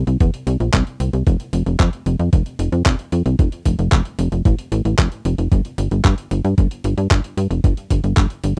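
A tight, punchy sequencer bass opens this short italo disco excerpt at 113 BPM, its sawtooth and square-wave tone plucked by a filter with a fast attack and given a metallic edge by ring modulation and a trail of tape echo, sitting up front between F1 and G2. Almost at once a dusty soul sampler-style kit of handclaps and hi-hat joins, gritty and compressed in a small room, while an electronic kick drum adds a thumpy, tape-warm pulse from 0.2 seconds. The dry, close studio sound suits the melodramatic, bittersweet mood of this straight 4/4 groove.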